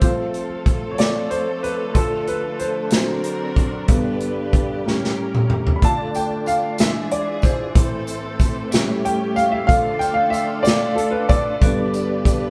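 From the first moment, a woody, intimate upright piano takes the lead in this slow, jubilant and soulful gospel excerpt at 62 BPM in 6/8, with its action noise audible over a punchy, natural drum kit, a mellow tonewheel organ with key click, fast rotary speaker and chorus vibrato, and a distant, lush bowed string section holding sustained chords. The drums break into a fill at 4.9 seconds as the harmony moves through F, Dm, G and altered dominant chords toward Am and back to Dm. A bright, jingly tambourine joins in the background at 6.1 seconds, and the band sounds as if it is playing live together in a stone room with moderate reverb.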